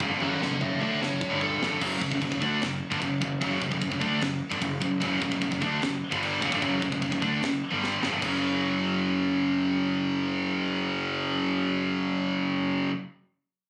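A dry, compressed recording that sounds captured on a phone in the room opens this dark, aggressive heavy metal cut in F# minor at 150 BPM, with a scooped, high-gain guitar up front, a bright distorted guitar behind it and a very quiet, double-tracked overdriven guitar all picking riffs over a growly, fuzz-laden fingered bass. A tight acoustic kit with a high-tuned snare, a tight kick, toms and crash drives the groove and adds fills, while a dark, distorted lead guitar with digital delay cuts in up front from 0.2 to 1.8 seconds. The drums fall away at 8.3 seconds, and the guitars and bass carry on alone as the harmony moves from F# minor to a bare F#5 power chord.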